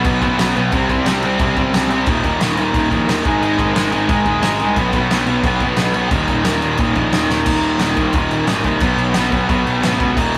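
A bright, scooped distorted electric guitar leads this rowdy, upbeat punk rock excerpt up front, its picked riff joined by a raw overdriven garage guitar in the background and a very quiet, dark, double-tracked fuzz guitar, over power chords that move through B5, C5, Eb5 and Ab5. A growly, fuzzed picked electric bass and a loose acoustic drum kit with a fat snare, punchy kick and dark crash cymbal drive the straight 4/4 groove. A drum fill at 7.3 seconds kicks off a new section at 7.5 seconds, all caught in a rough rehearsal-room recording with moderate small-room reverb.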